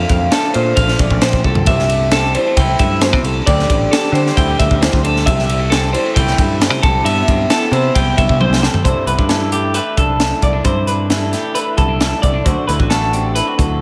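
A twelve-string electric guitar plays clean, compressed arpeggios over a dark, slightly broken-up electric guitar through a small old amp and a punchy picked electric bass, both guitars carrying slapback echo, while a crisp, gritty fusion drum kit with a high-tuned snare sits up front and fills at 1.4 s and 8.4 s, giving this playful, intricate math rock and midwest emo excerpt in C major at 134 BPM a lush hall reverb and big arena sound as the chords move from Bbmaj9 into a new section on C69 at 8.8 s.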